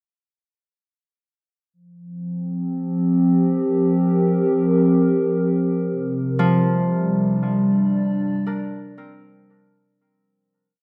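Melancholic and spacious, this short ambient piece at 58 BPM in 4/4 opens at 2.1 s with a warbly, dark, detuned tape-like pad holding slowly shifting chords from Fsus4 to Csus2 through chorus and its own reverb. At 6.4 s an up-front Celtic harp joins, its ringing fingerpicked arpeggios moving in four slow loops of unequal length through analog delay, while a long plate reverb and an echo-heavy mix surround the piece as it fades out from 5.9 s.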